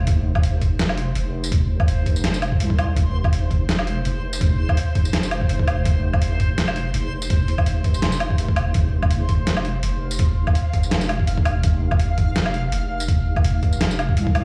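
A deep, dark wobble bass sits up front in this heavy, spacious half-time drum and bass excerpt at 166 BPM, its chorused low end holding down an F chord from the opening. A thumpy, pitched-down electronic kick and a gritty boom bap sampler-style kit of hi-hat, medium-tuned snare, tambourine and woodblock enter at 0.1 seconds with a light swing on the sixteenths. High above, a reversed, detuned granular texture swells dreamily with its own bright reverb, while the mix plays as if through a big sound system in a bare room.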